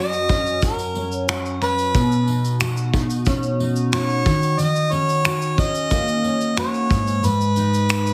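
A mellow, distant harmonica carries the melody over a full-bodied, double-tracked fingerpicked jumbo steel-string guitar from the first moment, joined at 0.1 seconds by a vintage brush kit with a punchy kick, finger snaps and shaker, and at 0.3 seconds by a jingly tambourine tucked in the background, giving this carefree, heartfelt acoustic pop excerpt, which moves through F#6, Badd9, D#m7 and G#madd9, a moderately reverberant, heavily compressed radio sound.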